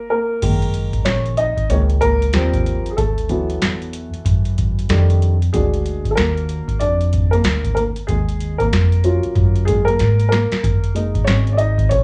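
Swung sixteenths at 94 BPM in 4/4 drive this smooth jazz-hop excerpt in F# major, where a dark, mellow upright piano with short sustain and plate reverb opens at 0.0 seconds and carries a solo over chords like F#6, D#69 and D#m9, joined at 0.4 seconds by a thumpy, pizzicato upright bass and an up-front, booming analog drum machine with a deep kick, crisp snare and metallic hats that plays a fill at 10.0 seconds, the whole track steeped in worn, warbly cassette pitch drift, light reverb and studio ambience.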